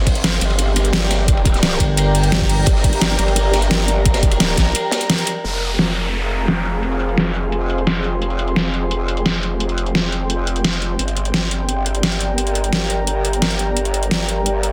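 This cut from a mechanical, futuristic dark technical drum and bass track in F minor at 173 BPM opens on a saturated, wobbling growl bass beneath a moody analog pad and an ethereal pad with built-in reverb, all three pumping to the sidechain. An overdriven electronic kick, an up-front dubstep kit with metallic hats and a deep snare, and a gritty breakbeat kit with a medium-tuned snare enter almost at once, and a thick FM growl bass cuts in briefly. The kick stops before a short break, the breakbeat kit drops out at 5.4 s as a downlifter sounds, and the dubstep kit carries on under a filter sweep while the chords move from Gm to Fm and back to Gm at 11.0 s, all in a dense, heavily limited modern master with light digital ambience.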